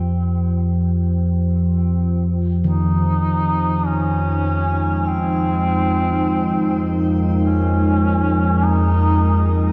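Dark and cavernous in a wet cathedral reverb, this ominous dark ambient drone excerpt at 50 BPM opens on a deep, rumbling drone up front and a detuned, moody analog pad with chorus and shimmer reverb holding Fsus2, until at 2.6 seconds the harmony shifts to Absus2/F as soft, bronze gamelan-type bossed gongs arpeggiate in the background and a clear duduk enters at 2.7 seconds with a folk-style solo melody full of vibrato and scooped notes.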